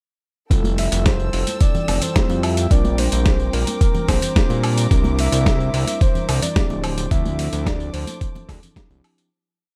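A four-on-the-floor kick, gritty and overdriven up front, drives this sunny, groovy nu-disco piece at 109 BPM in F major, joined by a dusty sampler-style kit with a disco backbeat of snare, hi-hats, tambourine and woodblock, plus soft-handed congas in the background. A fat, detuned sawtooth bass plays a dotted-rhythm line under a mellow tine electric piano holding rootless chords with syncopated pushes and slapback echo, while a dark, woody violin section sustains a pad, the bass, keys and strings all pumping with the sidechain. A soft, round octave-layered synth lead with chorus, cassette tape colour and analog delay carries hook phrases over a Fmaj9, Bb69, C9, Dm7 progression, and the whole short piece plays as a drop before fading out from 6.4 seconds.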